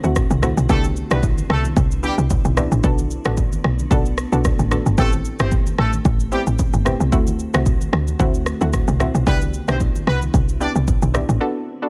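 Afrobeats at 112 BPM with a sultry, smooth swing, built on a woody, punchy log drum bass and a produced drum kit with deep kick, rim click and shaker carrying vintage 12-bit sampler grit, while round chorused analog plucks, a very quiet glassy FM pad, soft low-tuned congas and a distant, roomy horn section with light vibrato and octave doubling move over D7, Cmaj9, Bm7 and Am7 in a dry mix that drops to a brief break at 11.4 seconds.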